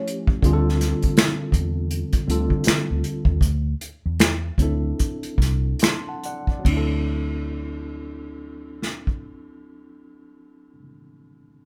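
A swung 16th-note 4/4 groove at 70-82 BPM, slowing down until 6.7 s, sets an introspective, soulful R&B and neo-soul mood: an up-front acoustic kit played with bundle sticks brings finger snaps, hi-hat, ride, a medium-tuned snare and a punchy kick in an airy small room. From 0.4 s, a round, foam-muted vintage electric bass plays in a dark, amped tone, while a worn, slightly out-of-tune tine electric piano, lightly overdriven through its built-in speakers, moves from Dm9 to D7. The drums stop at 9.2 s, the bass follows at 10.8 s, and the piano carries on alone to 11.7 s at the close of this excerpt cut from a longer piece, all under a light reverb that suggests a band playing live in one room.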